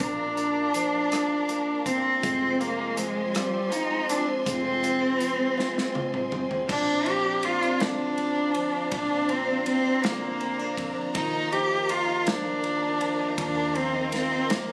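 Romantic and heartfelt, this six-eight pop ballad excerpt sets a rich, up-front bowed cello melody with expressive vibrato and portamento over a woody picked dreadnought acoustic guitar, a lush background string section, a dark, round foam-muted electric bass and an airy country drum kit with a punchy kick, while a clean, direct-recorded electric guitar joins with background arpeggios at 2.2 seconds and a drum fill leads into a new section at 6.7 seconds, all heard through plate reverb with the ambience of a phone recording in the studio.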